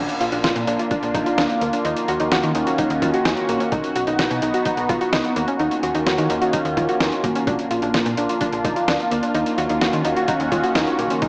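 A straight, steady four-beat groove is carried by a gritty, pitched-down boom bap drum kit that comes in at 0.1 s, its thumpy kick, medium-tuned snare and hi-hat sounding compressed and overdriven, as if re-recorded in a small room. Underneath, a snappy FM bass with a metallic, digital attack decays on each note, while a mellow, rounded pluck plays arpeggios with chorus and tape echo. Up front, a thick, detuned unison pad holds sustained chords with a slow attack and long release, its bright sawtooth body colored by chorus and phaser. The harmony circles between Bb, Ebm7 and B, giving this melancholic, nocturnal synth-pop fragment a brooding, unresolved pull. The whole mix sits in a lush hall reverb and carries the worn character of old cassette tape, with warbly pitch drift and a small-speaker tone.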